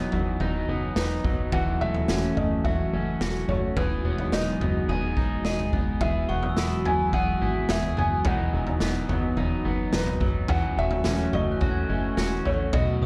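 A soft, felt-muted upright piano carries the melody through tape echo in this ethereal, blissful dream pop excerpt at 107 BPM, drifting over a detuned analog pad with chorus, twangy, slightly broken-up electric guitar arpeggios bathed in lush chorus and tape echo, a punchy, plucky analog bass and a gritty, boomy garage drum kit pumping in a small room, while a faint, bell-like glockenspiel rings in at 6.3 seconds and again from 11.3 seconds, all set in light reverb within an echo-heavy mix.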